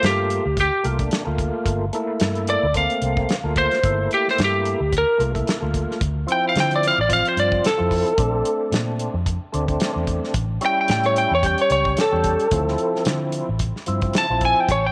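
Bathed in a moderate spring reverb, this soulful, brooding slice of straight-eighth soul blues sets a slightly broken-up, compressed lead guitar melody up front over a percussive tonewheel organ churning through a slow rotary speaker with overdrive and chorus vibrato, a dark, foam-muted fingered electric bass, and a warm small-room soul drum kit of tight kick, snare and hi-hat, moving from Gm7 through Dm7, Bbmaj7 and A7 back to Dm7.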